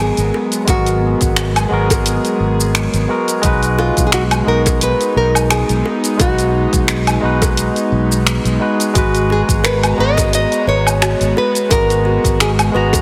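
Wistful and warm, this short cut from a longer sunset chillout piece drifts on a gently swung 4/4 groove. A bright, fingerpicked nylon-string guitar carries the melody through a delay, while a barky tine electric piano, clean through a combo amp and also treated with delay, supplies the accompaniment. Beneath them an airy, breathy pad holds soft, warbling, detuned chords with chorus, and a fingered electric bass sits up front in the low register. An overdriven deep house drum kit of finger snaps, hi-hat, shaker and woodblock enters at 0.2 seconds, joined by very quiet, high-tuned bongos at 0.3 seconds and a deep, overdriven electronic kick drum at 0.7 seconds. From 8.9 seconds a woody, hollow kalimba adds short thumb-plucked arpeggios with delay in the background, all set in a moderate scoring-stage reverb and pressed into a heavily compressed radio sound.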